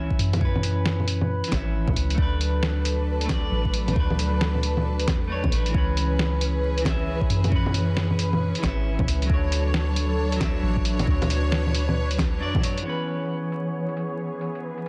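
A round, dark 808-style bass anchors this wistful, nocturnal future garage excerpt at 135 BPM with a swung 16th feel in C# phrygian, joined by a deep, tape-saturated electronic kick, a muffled, pitched-down sampler kit of bongos, filtered hi-hat and snare, a clean picked electric guitar pumping through tape echo, a faint glassy harmonics texture drifting behind, and a soft-bowed, intimate string section that enters at 2.2 s to sustain chords moving from C#m7 through Bm7 and Dmaj7, all set in light reverb under a dense, heavily limited master dusted with vinyl crackle.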